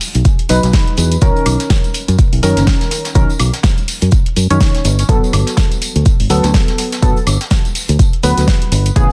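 A short excerpt of sunny, soulful deep house at 124 BPM opens with two drum kits at once: an electronic kit with a fat, tape-softened snare, hi-hat, tambourine and woodblock, and an airy brushed jazz kit with shaker and a high-tuned snare tucked in the background. A dark, round fingered electric bass and an up-front deep electronic kick join in the first moments, swung on the sixteenths, before a soft, detuned chord stab enters at 0.5 seconds, its chorus, cassette tape colour, digital delay and sidechain pumping carrying it through Emaj7sus2, Bmaj9 and Gmaj9. Studio reverb and vinyl crackle sit over a dense, heavily limited modern master.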